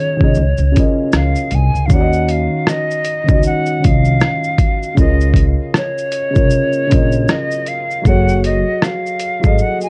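A gently swung 78 BPM groove in 4/4 drives this mellow, cosy lo-fi hip hop excerpt, where a gritty, overdriven sampler-style kit with a thumpy kick, hi-hat, rim click and shaker sits up front beside a felt-muted upright piano, dark and intimate through cassette tape and a low-pass filter, while a woody, growly pizzicato upright bass anchors the Db6, Ebm9 and Gbmadd9 chords and a breathy metal jazz flute with vibrato and a crisp chiff floats its melody through tape echo, the music tuned to A4 = 438 Hz.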